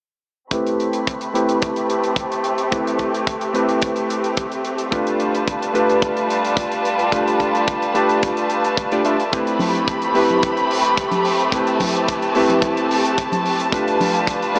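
A clear, clangy vintage electric grand piano with subtle chorus and a diffuse delay provides the accompaniment in this groovy, feel-good nu-disco excerpt, sharing the front with a rich, bowed chamber violin section whose smooth, vibrato-laden sustained chords carry sidechain pumping, both passing through a low-pass filter sweep over Am9 and G9 while a tight, up-front kick and a small-room hi-hat keep time and bright, dry congas slip into the background at 9.6 s, the whole dreamy mix soaked in huge reverb yet heard as if through a small speaker.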